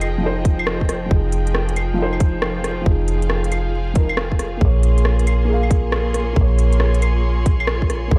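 Rainy and nocturnal, this swung future garage excerpt sets a muted, felt-damped upright piano with analog delay against clear, bowed symphonic strings that carry light vibrato and a vintage 12-bit sampler grit, both pumping to the sidechain over a round, deep 808-style bass that sits up front. An overdriven electronic kit of crisp hats, claves and rim clicks, re-recorded in a large room, runs from the start, and a tight, overdriven kick punches in at 0.5 seconds as the harmony moves from Fm7 to Bbm7 at 4.6 seconds. The sound is dry and gritty with a layer of vinyl crackle, and the clip is cut from a longer piece.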